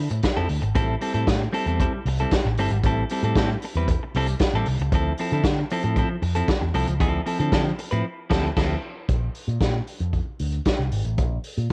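A lo-fi home cassette recording in a small room carries this joyful, celebratory disco excerpt at 115 BPM, where a bright, twangy clean electric guitar with a cassette-tape tint picks through Dm9 and Am7 until 8.8 seconds, a picked electric bass with an envelope filter sounds in a warm, amped tone, and a roomy vintage drum kit with dark cymbals and a punchy kick drives along, with the band hitting an accent at 8.0 seconds before the bass and drums carry on alone over a chordless stretch from 9.1 seconds.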